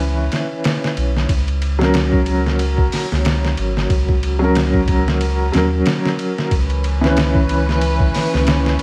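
Felt-muted upright piano and a soft dub sub bass open together, the piano mellow and close with its action noise audible, treated with tremolo, a low-pass filter and tape echo, while the bass sits deep and round beneath it. This is a hypnotic, dark trip hop excerpt cut from a longer piece, moving at 92 BPM in 4/4 with a swung sixteenth-note feel. A sampler-style drum kit arrives at 0.3 seconds, up front, compressed and pitched down, gritty in tone, with a thumpy kick, a medium-tuned snare, hi-hat and ride cymbal set in a small room ambience. The harmony shifts from C#m7 to F# and returns to C#m7 at 6.5 seconds, where a chamber string section enters with soft-attack, sul tasto bowed chords carrying light vibrato. Light reverb and a layer of vinyl crackle frame the whole passage.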